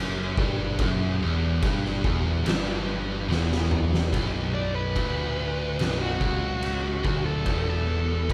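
Ominous and sludgy, this stoner and doom metal excerpt crawls at 72 BPM in B minor, with two dark fuzz guitars sitting far back beneath a bright, double-tracked distorted rhythm guitar and a round, punchy overdriven bass on a heavy riff moving from Emadd9 to Bm, while an oversized low-tuned drum kit with a fat snare and boomy kick enters at 0.4 seconds, plays a fill from 3.3 seconds, and a compressed fuzz lead guitar comes forward with a solo at 4.5 seconds, all captured as a band playing live in one room with light reverb.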